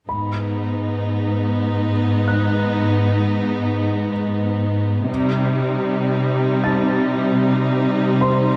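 Cinematic and brooding, this short build-up moves at 96 BPM in a straight 4/4, its vast mood carried by a moderate scoring-stage reverb. A rich, focused viola section holds the accompaniment with vibrato and a smooth top, bowed as an ensemble and placed up front. Beneath it, a lush cello section supplies the bass, even and bowed with vibrato, its symphonic tone sounding distant yet still forward in the mix. High above the strings, a dark, mellow grand piano adds texture through a digital delay, its intimate, natural sound carrying audible action noise at a lower level than the bowed parts. All three parts sound together from 0.1 to 8.6 seconds, with the harmony shifting from G#m to Cm at 5.1 seconds in this fragment cut from a longer piece.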